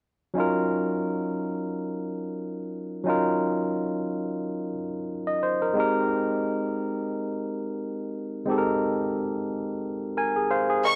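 A moderate plate reverb gives this short soul cut a glossy, romantic sheen, tuned slightly flat to A4 = 437 Hz. A barky tine electric piano, lightly overdriven through a combo amp and set up front, carries the accompaniment at an easy 89 BPM in 4/4, with a gentle 16th-note swing that keeps the feel smooth. The harmony rests on Ebm7 before moving to Abmaj7 at 5.8 seconds, with the electric piano ranging from Gb3 up to Ab5. Around 9.8 seconds the electric piano plays a fill. At 10.9 seconds a clear, lush studio violin section enters on a high Db6, bowed with vibrato and a biting, intense edge, sounding distant yet up front, just as the passage is cut off.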